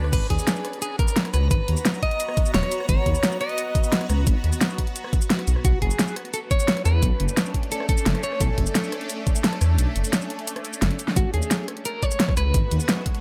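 Rolling at 174 BPM in a straight 4/4, this lush liquid drum and bass cut in G# minor pairs an up-front, overdriven electronic kick with a pop drum kit of fat snare, warm hats, rim click, shaker and crash, under a deep, rumbling detuned saw bass, a dark, slightly broken-up electric guitar melody with tremolo and dub echo, and a shimmering, ethereal pad with chorus, phaser and sidechain pumping, moving from rootless G#m9 to Bm9 before the kick drops out at 9.8 seconds and a drum fill lands the G#m7 at 11.2 seconds.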